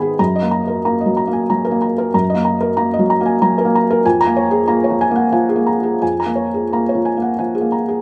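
A felt-muted upright piano carries this short neoclassical minimalist fragment alone, its soft, mellow tone sitting up front and intimate, with the audible noise of its action woven into the sound. The mood is tender and hopeful, moving at 93 BPM in 3/4 with uneven beats and a rubato feel that lets the pulse breathe. The piano spans from E#2 up to B5, and a slapback echo trails just behind its notes. The harmony settles on D#m/F# at 0.2 seconds before shifting to A#m7/E# at 4.0 seconds. Captured outdoors with little reverb and a dry, close presence, the passage is cut from a longer piece and lasts 8.0 seconds.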